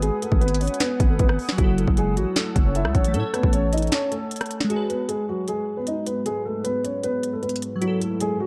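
A hard-hitting, shadowy trap excerpt at 154 BPM in a half-time feel opens with a boxy, intimate dark concert grand piano carrying the melody with audible action noise, over glassy, detuned digital keys with chorus and a filter sweep, a deep, warbling vintage ambient pad holding sustained chords through chorus and built-in reverb, a growling, buzzy 808-style bass that drops out at 3.9 seconds for a brief break, and an up-front trap kit of hard-clipped kick, sharp snare, rim click and crisp hats that runs until 8.3 seconds, all moving through G#m7, F#m7 and Amaj7 in a dark, warm production with light digital ambience.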